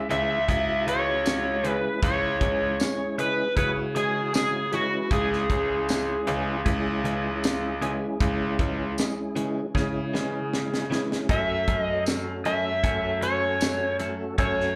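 Soul blues at 78 BPM in C# minor, brooding and soulful, with an overdriven slide guitar singing the melody up front over a round, dark tonewheel organ turning through a slow rotary speaker and chorus vibrato. A bright concert grand piano carries the bass line with long sustain, while a twangy, direct-recorded clean electric guitar adds compressed stabs in the background and a tight funk kit with high-tuned snare and tambourine drives the straight-eighth groove. Heard as a live gig through a club PA, this short cut from a longer piece sits on C#m until a drum fill at 9.8 seconds leads into F#m at 11.3 seconds.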